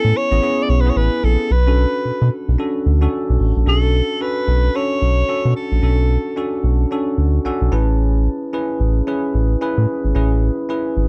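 New jack swing R&B with a confident, bouncy swung groove, where a breathy, whispered alto saxophone carries the melody with vibrato and scooped notes until 6.6 seconds, over a bell-like, chorused tine electric piano that adds a fill at 7.2 seconds and a round, deep analog bass, all captured in a dry, close, 1970s-style studio sound.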